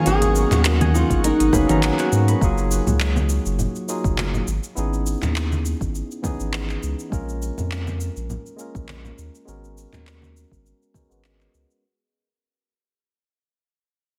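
A deep, round sine sub bass sits up front in this sunny, warm sunset chillout excerpt at 102 BPM, with a light 16th-note swing over G#m11, C#m9/G#, A#m7 and back to G#m11. A dark, fingerpicked flamenco guitar carries the melody with delay only until 2.1 s, while a ringing concert harp arpeggiates in the background and an airy, breathy pad with chorus, phaser and 12-bit sampler grit briefly holds chords. A barky, lightly overdriven tine electric piano accompanies throughout, taking on a filter sweep as the music fades out from 2.4 s, over a soft, tape-colored electronic kick, the smooth hats, handclaps and shaker of an R&B kit, and bright, hard-handed congas, all under a light reverb.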